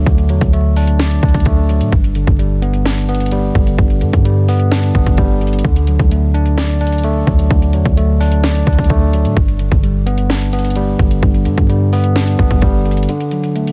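A bright, clean tine electric piano sits up front through a low-pass filter, drifting between D and G chords over a deep, boomy sine 808 bass that drops out at 13.1 seconds and a trap kit of hard-clipped kick, sharp snare and metallic hats, giving this wistful, dreamy half-time hip hop cut a dense, heavily limited, dry sound dusted with vinyl crackle.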